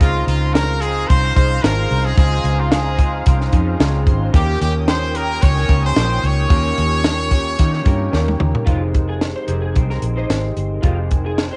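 A lightly swung 111 BPM groove in 4/4 from an up-front cocktail drum kit with a punchy kick and high-tuned snare, plus a round, foam-muted electric bass, carries this wistful, lonely F minor bedroom-pop excerpt, where a brilliant, forceful trumpet with vibrato, lush chorus and tape echo sings the melody until 8.4 seconds over glossy retro synth keys, a thick detuned pad with chorus and phaser, and a slightly broken-up guitar through a small old amp with warbly pitch drift, before a drum fill leads at 8.7 seconds to a picked guitar second line with tape echo, all moving from Dbmaj7 through Eb7 to Fm7 under a hazy cassette sheen.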